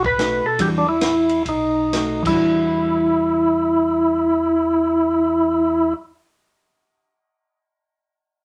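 Soul jazz organ trio music in E minor, soulful and late-night in mood, cut from a longer piece with a swung 4/4 feel between 113 and 154 BPM that slows down over the first 2.4 seconds. Up front, a percussive tonewheel organ carries the melody between D4 and B4, its full, clean tone marked by second-harmonic percussion, key click and a slow rotary speaker. A second tonewheel organ holds the bass line from B1 to B2, mellow, round and dark, with its own key click and slow rotary. A compact cocktail drum kit plays kick, snare, hi-hat, ride and crash only until 2.3 seconds, sounding dry and natural with dark cymbals, a high-tuned snare and a tight kick. From 0.2 seconds a hollow-body jazz guitar, fingered and shadowy in tone, accompanies through the alternating B7 and Em9 changes, all set in a moderate studio ambience.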